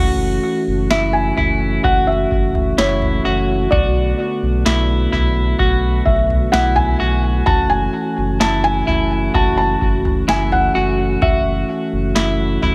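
A soft, felt-muted upright piano carries a tape-echoed melody from 0.9 s in this hazy, ethereal dream pop excerpt at 64 BPM, drifting over F#m7 and Bm7 with a mellow, flute-like tonewheel organ through a slow rotary speaker, dark clean electric guitar arpeggios with subtle chorus and tape echo, a deep, full sub bass with octave, and a booming analog drum machine with deep kick, crisp snare and toms, all bathed in an echo-heavy mix and a moderate echo chamber reverb.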